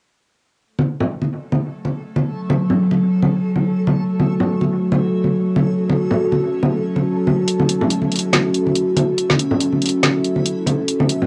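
Heavy and dark, this deep dubstep excerpt moves in a half-time, lightly swung feel on a home cassette recording, with bright, hard-handed congas soaked in dub echo opening at 0.8 seconds. A resonant sawtooth-and-sine drone with moving overtones and a sweeping notch holds sustained chords up front from 2.3 seconds, while a reversed, granular texture of dreamy triangle tones sits lower in the mix. A layered electronic deep house kit with a woody snare and dark hats arrives at 7.5 seconds.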